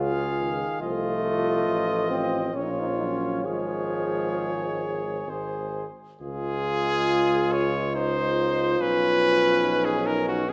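A clear, close-miked cornet sings the lyrical melody up front with light vibrato in this tender, hymn-like classical brass band passage in a rubato three-four, over a warm flugelhorn second line, a distant euphonium and a vintage-toned trombone in accompaniment, and a roomy tuba bass with vibrato, set in a wet scoring-stage reverb.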